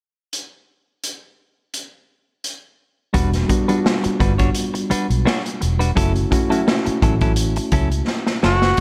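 Lush 1970s-style soul at 85 BPM in 4/4 with a gently swung sixteenth feel, this short cut from a longer piece sits in E dorian and carries a bittersweet, cinematic mood. A vintage drum kit opens alone at 0.3 seconds, its punchy kick, medium-tuned snare and hi-hat sounding up front with a rolled-off top in a studio room. At 3.1 seconds the harmony arrives on Em9, moving later to F#m7, as a mellow, reedy electric piano with fast tremolo plays accompaniment through its built-in speakers and a clean, compressed, picked electric guitar plays a riff. A moment later a dark, round, foam-muted fingered bass with an amped tone joins to anchor the low end. A drum fill arrives at 8.1 seconds, and at 8.5 seconds a breathy, whispered tenor saxophone steps up front on a single F#4, with vibrato, a soft attack and scooped notes in an intimate jazz style. The whole is set in light reverb with a small room ambience, giving it a close, warm glow.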